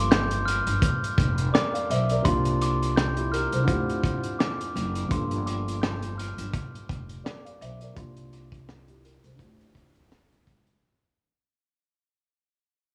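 A crunchy, saturated breakbeat kit with a tight kick and high-tuned snare sits up front in this dark, gritty boom-bap hip-hop fragment, joined by a thumpy, woody pizzicato upright bass, a mellow vintage grand piano with audible action noise playing extended chords, and a ringing, bell-like glockenspiel melody struck with soft plastic mallets and trailed by tape echo, all wrapped in vinyl crackle and light studio reverb as a filter sweep and fade-out run across the whole clip.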